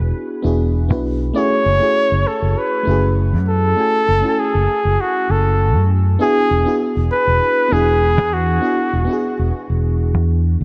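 Dark, lightly reverberant small-room production frames this smooth, wistful sunset chillout fragment at 99 BPM, where a round, amped, up-front fingered electric bass and a mellow, warbling vintage FM electric piano with chorus and tape echo move between E9 and F#m7 while a close-miked flugelhorn carries a jazz-style solo melody with vibrato and tape echo from 1.4 to 9.5 seconds.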